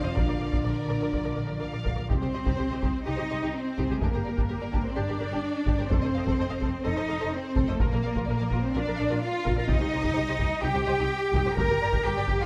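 A straight 4/4 pulse at 127 BPM drives this dramatic, heroic cinematic orchestral cue in C minor, with a taiko ensemble striking with heavy sticks from 0.2 s. Vibrato-laden violins carry a focused melody in the background while a second, more distant violin line and an expressive viola accompaniment fill the middle. Mellow French horns hold sustained chords, a lush symphonic string section adds smooth chords until 2.1 s, and cellos and double basses anchor the bass with a rich, lush tone, all set in a moderate scoring-stage reverb as the harmony cycles through Bb, Cm, Gm and F7.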